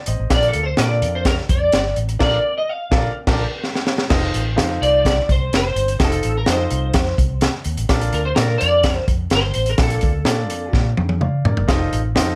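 A grand piano opens this short, uplifting 1960s-style soul cut, its polished, present tone laying down chords in F mixolydian at an uptempo 126 BPM in a straight 4/4. Almost at once a vintage muted fingered electric bass and a crunchy breakbeat drum kit join, the bass round and punchy, the kit gritty and saturated with a high-tuned snare, tight kick and dark cymbals sitting up front. From 0.3 seconds an electric guitar through a small old amp carries the melody, twangy and slightly broken-up, its bright picked lines thickened by an ensemble chorus. The harmony moves between Bbmaj7 and F7 across two passes of the same section, with a band accent from 2.2 seconds joined by a drum fill that turns the phrase at 4.1 seconds. Another drum fill arrives at 10.7 seconds, just as the guitar finishes at 10.8 seconds, and light reverb gives the whole small-room sound a gentle glow.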